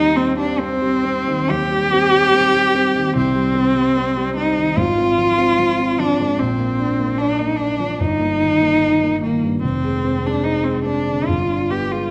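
Bathed in the wet reverb of a recital hall, this 12-second fragment of an elegiac romantic duo in C minor moves at a rubato 74 BPM, tuned to A4 = 439 Hz. A rich, bowed solo cello sings the melody up front with expressive vibrato and portamento. A dark, mellow baby grand piano with a worn, vintage tone supplies the accompaniment and settles on a G chord at 11.3 seconds.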